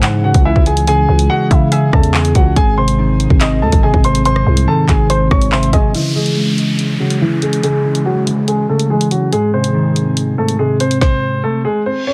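Drill hip hop at 142 BPM in a half-time feel, this menacing, cold excerpt in C# harmonic minor pairs an intimate, up-front grand piano melody with audible action noise, a dark, clean, fingered electric guitar accompaniment, a very quiet airy, breathy pad holding sustained chords, and a nasal, warbling lo-fi pluck drifting in the background, all over an up-front electronic drum kit with a hard-clipped kick, woody snare, warm hi-hats, claps and rim clicks carrying gritty 12-bit sampler character, while a growling, buzzy 808-style bass and the pluck drop out at 5.9 seconds as a filter sweep and electronic downlifter take over, capped by a reverse cymbal at 11.9 seconds in a dry, dense, heavily limited mix.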